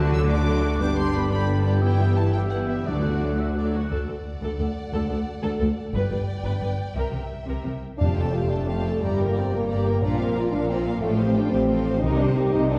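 A lush, vibrato-rich violin section carries the soaring melody of this heroic adventure film-score excerpt, joined by a second, clear and intense violin line, in a 6/8 pulse at 118 BPM that moves from D major into F mixolydian at 8.0 s. Beneath them a rich viola section, a smooth cello section and an up-front double bass section hold the harmony and bass, while a mellow, hollow flute ensemble, a vintage-toned clarinet and a softly attacked oboe add background lines that end between about 3.7 and 3.9 s. Distant, roomy French horns and bright, tight trombones sustain chords in the opening and return at 8.0 s, very quiet hard-mallet timpani strike a few articulate accents, and the whole orchestra sits further back in a wet scoring-stage reverb.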